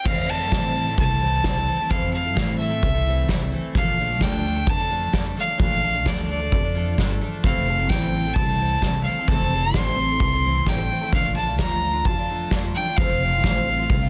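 This recording sounds dry, dense and heavily limited, with a modern master. The uplifting indie folk passage, cut from a longer piece, moves in a straight 4/4 as the harmony alternates between Fmaj7 and Bbmaj7 before arriving on F at 13.0 seconds. A clear, earthy fiddle sits up front with light vibrato, carrying the melody through a tape echo. Beneath it, a jumbo twelve-string acoustic guitar is picked with a shimmering, octave-doubled, full-bodied tone and audible finger squeaks, while a woody, growly pizzicato upright bass on steel strings holds the bottom. A distant, roomy drum kit played with soft mallets adds a punchy kick, a medium-tuned snare and dark crash cymbals with a rolled-off top, all within a building arrangement.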